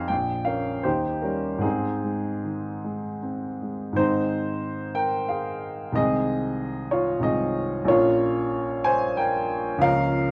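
Stormy and brooding, this romantic character piece for solo piano moves in a flexible, rubato three-beat metre. A warm baby grand plays alone throughout, its open, long-sustaining tone sitting up front and reaching from deep bass notes up into the upper register. The harmony opens on Bbm and Eb7 before settling onto Ab, then a second section begins at 4.0 seconds, passing through Ab/C and returning to Bbm near 7.9 seconds. A moderate large-studio reverb gives the instrument space. Worn, warbling old cassette tape adds a wavering pitch drift to the whole recording. The passage is cut from a longer piece.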